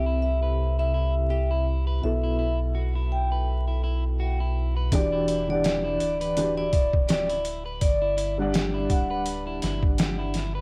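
A dark, melancholic trip hop fragment opens with a ringing, metallic vibraphone melody carrying a slow motor vibrato, set over a soft, boxy felt-muted upright piano with tremolo, twangy, slightly broken-up electric guitar arpeggios dulled by 12-bit sampler grit and a low-pass filter, and a round, deep analog bass up front. The vibraphone, piano and guitar share a cassette tape colour and tape echo, drifting from C6 to B7sus4 before settling on Em9 as a compressed, pitched-down sampler-style drum kit with a thumpy kick and medium-tuned snare enters at 4.9 seconds. Light reverb, vinyl crackle and the hazy feel of a home cassette recording give the swung groove an intimate, worn character.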